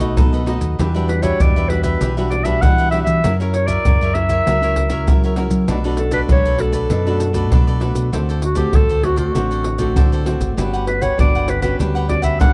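This dry, close recording has the character of a 1970s studio session, with a small room ambience around the players. A playful, sunny blend of samba and choro moves in a straight 4/4, led by a classical-style clarinet that sits up front as the solo melody voice yet sounds distant and roomy. Beneath it, a bright, crisp picked cavaquinho and a warm, fingerpicked nylon-string guitar with audible finger squeak fill out the harmony. A deep, dark, round fingered electric bass, direct and amped, anchors the low end, while maracas, a tight surdo and pandeiro, played with hard hands, add close acoustic percussion. The chords travel from B7 through Em9, F#7, Bm7 and D7 before arriving on Gmaj7#11 at 10.6 seconds, and the 12.5-second passage is cut from a longer piece.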